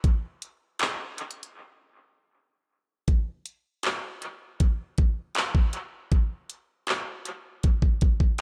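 Sensual and longing, this short excerpt from a longer R&B piece moves at an unhurried 79 BPM in a straight 4/4 feel. A single smooth R&B drum kit carries the whole passage, sitting up front with handclaps, hi-hat and a knocking kick drum. Its electronic, produced character takes on vintage 12-bit sampler grit and an analog delay, the hats are warm, and the kit was re-recorded in a small room. A break arrives between 1.6 and 3.1 seconds before the second section carries the groove on to the end. The mix is dry in terms of reverb yet heavy with echo, giving the beat a lingering, intimate presence.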